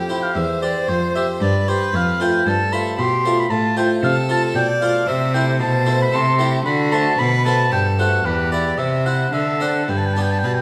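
A wet recital-hall reverb with a 1.5-second decay surrounds this radiant, dance-like passage, cut from a longer baroque-style sonata movement with continuo. It moves at 113 BPM in a straight 3/4, with an oboe carrying the melody across a range from B4 to C6, its tone distant and roomy yet sitting up front as the solo voice. Beneath it, a single bowed violin plays a smooth, even second line with a rich vibrato, while one bowed cello holds the bass up front with a focused sound, a smooth top and its own vibrato. A Flemish-style harpsichord, plucked on two sets of strings, fills out the accompaniment with a full, mid-forward body across a range from E2 to C5. All four parts play together throughout the roughly 10.6 seconds, as the harmony passes through C/E, F and A minor to D7 at 6.7 seconds, then quickens through E minor, C and D7 before settling on G at 9.9 seconds.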